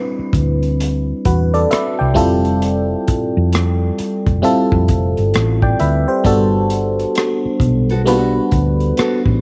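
A swung sixteenth-note groove from a crunchy, gritty breakbeat kit with a punchy kick, hi-hat and rim click drives this smooth R&B and neo-soul excerpt, where a glassy, bell-like FM electric piano sits up front with chorus and phaser over Cmaj9, Fmaj9 and Gmaj9 chords, a round, dark hollow-body electric bass holds the low end, and a small fingerpicked nylon-string guitar with audible finger squeak slips in at 7.9 s, all in a light small-room ambience.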